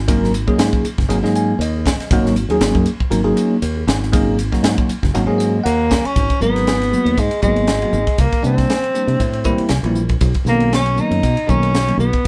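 Lightly reverberant and played live in one room, this intense, slick electric jazz fusion excerpt in G# minor moves at 118 BPM with a sixteenth-note swing, as a growly fingered electric bass and a crisp drum kit with punchy kick and dark cymbals drive beneath a bell-like tine electric piano colored by phaser, which adds fills at 1.1 and 5.1 seconds, before a breathy, intimate tenor saxophone with scooped notes and subtone enters up front at 5.7 seconds over chords moving through G#m9, C9 and Bmaj9.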